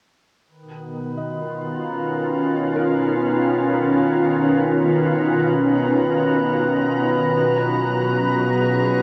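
Luminous, warm ambient music at 70 BPM in Db mixolydian, where a pure, organ-like pad sustains chords up front from 0.9 seconds, moving from Db13 to Abm9 with ensemble chorus and shimmer reverb, joined by a drifting, glassy harmonics texture from 1.0 seconds and a mellow, felt-muted upright piano playing delayed arpeggios in the background as it fades in, all bathed in a huge, wet reverb and the warbling pitch drift of worn cassette tape in this excerpt cut from a longer piece.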